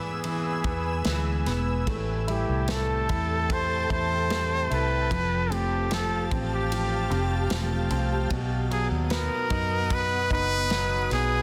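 A jazz-style trumpet with vibrato and scooped notes carries the melody up front in this heartbroken pop ballad excerpt, over a bright grand piano, a dark fingerpicked steel-string acoustic guitar in the background, a round, foam-muted electric bass, a natural country drum kit with punchy kick, snare and ride, and a shimmering, ethereal pad with chorus and reverb, in light studio ambience with a dense, heavily limited master.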